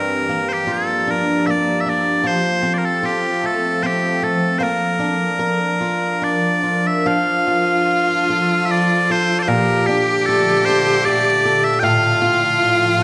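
Celtic folk slow air at 76 BPM in 3/4, wistful and tender with a rubato feel, where loud, piercing bagpipes carry the melody up front over boxy picked swing-style acoustic guitar and an icy, crystalline glass pad with chorus and phaser, joined at 7.1 seconds by a clear, close bowed cello with vibrato playing a second line, all within a scoring stage reverb, in a short cut from a longer piece moving through Gm7, F, Bb and Bbmaj7.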